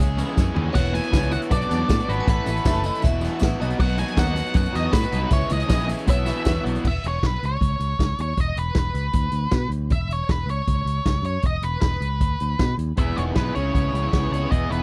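This upbeat yet wistful indie rock excerpt at 157 BPM in E major opens with a bright, overdriven raw garage guitar riff over a growly, up-front picked electric bass, a jingly tambourine in the background and a very quiet, swirling phased string machine holding sustained chords. A distorted, compressed fuzz guitar riff and a vintage drum kit with dark cymbals, a medium-tuned snare and a punchy kick join almost at once. At 0.7 seconds, a dark octave-fuzz lead guitar takes the melody, with a glassy, crystalline FM synth bell carrying a second line behind it. At 6.8 seconds, the riff guitars, string machine, tambourine and bell drop away, leaving drums, bass and lead guitar over chords such as E5, C#sus2 and Bm/D. The riff guitars and string machine return at 13.0 seconds on Emaj7 and C#m7, all captured in a dry, close 1970s-style studio sound.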